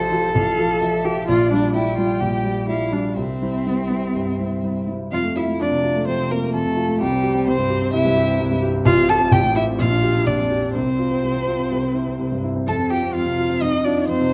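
In a rubato 4/4 feel, this quick, spirited and cheerful classical-period piano trio passage, cut from a longer movement, places a focused, vibrato-laden bowed violin melody up front over a smooth, even cello second line, while a dark, mellow grand piano of vintage character, also forward in the mix, carries the accompaniment; the three parts play throughout in a large studio's moderate reverb, and a new section begins at 5.1 seconds.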